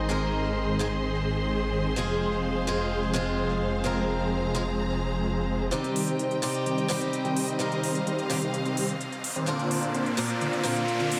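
Festival progressive house at 128 BPM in C minor, powerful and emotional, where huge, detuned supersaw chords with delay and a filter sweep carry the riff over Ab, Fm, Cm and Bbadd9. A bright, boxy, picked swing-style acoustic guitar with delay and distant, vibrato-rich symphonic strings sit alongside them, while a thick, saturated, chorused saw bass drives the opening until 5.7 seconds. Crisp, tape-toned electronic hi-hats then start the build-up, and an electronic riser enters at 8.4 seconds, all in a moderate digital room reverb.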